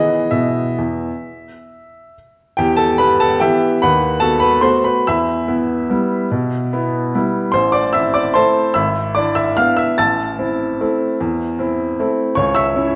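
A clear baby grand piano carries this short classical waltz alone, sitting up front with an intimate, natural tone, long sustain and audible action noise. The piece moves in 3/4 with a rubato feel, its tempo drifting between 128 and 159 BPM, and the mood is playful and elegant. Set in E minor, it opens on an E chord before a new section begins at 2.6 seconds, moving through Em, B7/D# and back to Em, then turning to Am at 7.5 seconds and E7/G# at 8.8 seconds, returning to Am and closing on a rootless A/C# at 12.4 seconds. The piano spans a broad range from G#1 up to A6. A wet recital hall reverb surrounds it, while a worn, warbling cassette-tape quality adds a drifting wobble to the pitch. It is a brief passage cut from a longer piece, lasting 13 seconds.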